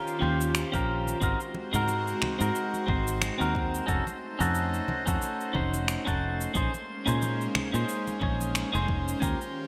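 Relaxed sunset chillout in Bb minor at 90 BPM with a swung sixteenth feel, where a twangy, up-front clean electric guitar with digital delay rides over an airy, breathy chorused pad, a glassy drifting-harmonics texture in the background, a round, foam-muted fingered bass, overdriven electronic kick and gated cabasa and finger snaps, and very quiet hard-hand congas, moving through Eb9, Ab9 and F7b9b13 to Bbm11 in a bright 1980s-style digital production with plate reverb.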